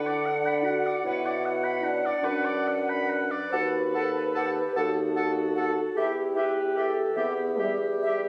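This is a slow romantic classical movement for wind quintet in 6/8, taken at a rubato pace of about 44-51 BPM in dotted quarters, with a yearning, solemn mood, cut from a longer piece. It opens in B minor and turns toward E minor from 3.5 s, moving from B minor through B7 to arrive on E minor at 6.0 s. An airy concert flute carries the melody with expressive vibrato and a soft attack, sounding close and intimate, while a bright oboe sings a present second line with light vibrato. Beneath them, a mellow French horn with light vibrato and a clarinet fill out the accompaniment from a more distant, roomy position. A dark bassoon sits up front with a soft attack, anchoring the bass. The ensemble rings in a moderate scoring-stage reverb, but the sound was captured on a phone in the room, adding a club-like ambience and a compressed feel.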